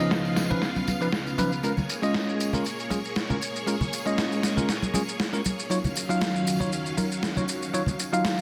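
A dense, heavily limited modern mix with moderate plate reverb frames this sleek, sensual nu-disco excerpt on lightly swung sixteenths, where an up-front, bell-like tine electric piano with low-pass filtering and delay plays clean accompaniment over lush, vintage string-machine chords thickened by ensemble chorus, while a gritty, overdriven electronic shaker and snare in small room ambience sit beside close, acoustic tambourine and congas.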